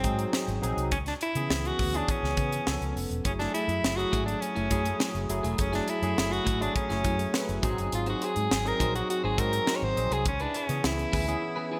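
A clear, forceful soprano saxophone carries the melody up front with vibrato and a touch of digital delay, over a slick, urban 1980s jazz-funk pop groove built from a barky tine electric piano with analog chorus, a round, foam-muted fingered bass and a crisp fusion drum kit with a high-tuned snare and punchy kick. At 3.2 seconds a slightly broken-up, picked electric guitar slips in behind with a riff under subtle chorus, and the band drops into a brief break at 11.4 seconds in this fragment of a longer piece. The bright digital production sits in a lush hall reverb.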